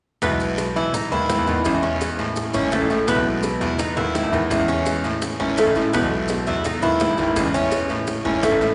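Latin Cuban son in the guajira style, sunny and danceable at 168 BPM in 4/4, this short cut from a longer piece in E major moves between Emaj7 and Amaj7. A fingerpicked flamenco guitar with fresh strings supplies accompaniment, while a metallic, double-strung Cuban tres picks arpeggios and a brilliant, worn concert grand piano sits up front with a deep bass line. Tight, high-tuned bongos struck with hard hands stay very quiet beside a raspy guiro in the background and grainy, mellow maracas, and the ensemble plays from 0.2 s to about 8.7 s inside a wet church reverb with a long 3.7 s tail and a top end that stops around 10.3 kHz.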